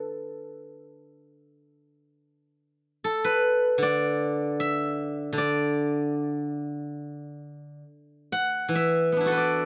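Chinese traditional solo plucked-string music in a pastoral, serene mood, this brief excerpt features a silvery, ringing steel-string zither played with fingerpicks, sounding up front and alone from 0.0 to 9.7 seconds across a range from D3 to F#5 in the D gong mode, moving with a rubato feel around 64-78 BPM in 4/4, captured in a dry, close 1970s-style studio recording with little reverb.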